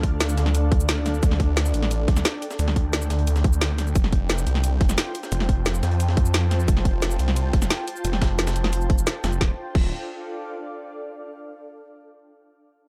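A snarling, growling saw bass with tube saturation and sidechain pumping drives this dark, tense slice of technical drum and bass at 176 BPM in D minor, joined from the start by an up-front overdriven electronic kick, a layered drum and bass kit with a woody snare, bright hats, shaker and crash, a gritty high-tuned breakbeat kit tucked in the background, and a cloudy, blurred granular pad that pumps beneath the mechanical Dm to Fadd9 movement, lingering alone after the other parts drop away near 9.9 seconds.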